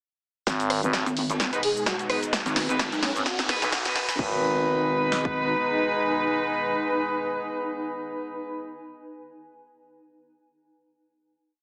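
Gritty and swaggering, this short bass house piece runs at 129 BPM in G# minor with a swung sixteenth-note feel, building from 0.5 to 4.2 seconds before settling on a final G# minor chord that holds until about 7.9 seconds. Two layered house drum kits drive the build with a punchy four-on-the-floor kick, snare backbeat, rim, shaker, open and closed hats and a crash, alongside a drum fill and filter sweeps, while a very quiet, dusty sampler-style breakbeat loop adds a compressed, small-room hi-hat and snare underneath. Up front, a growling FM bass plays chopped phrases, and a detuned, saturated pluck wobble bass answers it with modulated phrases of changing wobble speed, sidechain pumping pushing both against the kick. A pop-style horn section cuts through with tight, syncopated chord stabs doubled in octaves, colored by a low-pass filter sweep and tape echo, while a breathy, flute-like synth lead with vibrato offers short answering phrases until 4.1 seconds. 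Behind them, an evolving sawtooth pad with a filter swell and a dark, blurred granular cloud pad with slowly shifting chords sustain through the final chord, and a background riser and impact marks the transitions. The mix is heavily compressed with a thin, small-speaker radio quality and a moderate digital room ambience.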